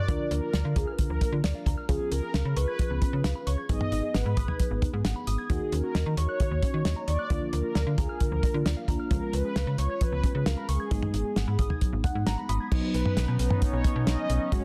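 Nocturnal and cool, this synth-pop excerpt moves at 133 BPM in a straight 4/4. A round, detuned synth brass carries the melody over a soft, vintage FM electric piano, while a lo-fi, warbling pluck spins arpeggios until 12.7 seconds; up front, a snappy FM bass with a metallic attack sits beside a damped 70s drum kit with a fat snare, tight kick and dark cymbals. The electric piano plays a short fill just before a shimmering pulse-width pad enters on a Badd9 chord after a cycle of Bb/D, Db7, Abm7 and Ebm7, all within a dense, heavily limited mix with light reverb and small-room ambience.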